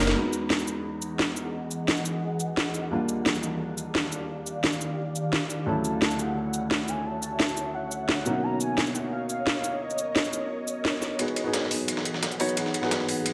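A layered, electronic garage drum kit with a cracking snare, crisp hats and cabasa sits up front in this uplifting liquid drum and bass excerpt, over a soft, felt-muted upright piano and an ethereal, airy pad of sustained major-ninth chords with a filter sweep, all set in a lush hall reverb. A velvety synth lead with vibrato carries the melody from 5.7 to 10.3 s. At 11.2 s a build-up begins as a deep, rumbling detuned saw bass and a gritty, overdriven sampler-style kit with hi-hat, ride and snare, both heard only briefly at the very start, rejoin, while a filter sweeps the piano.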